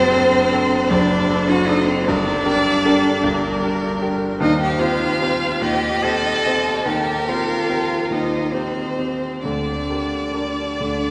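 In a rubato 12/8 lilt of roughly 44-53 dotted-quarter beats per minute, this elegiac, melancholic passage from a slow romantic piano-quartet movement in G minor, tuned to A4 = 435 Hz, sets a warm violin in the background singing the melody with vibrato, soft attacks and portamento over a close second violin and a rich, smooth cello line, while a clear, polished grand piano up front, its action noise audible and its sustain short, accompanies through D7/F#, Gm, Cm/Eb and Gm/D, the ensemble heard from further back in a wet church reverb.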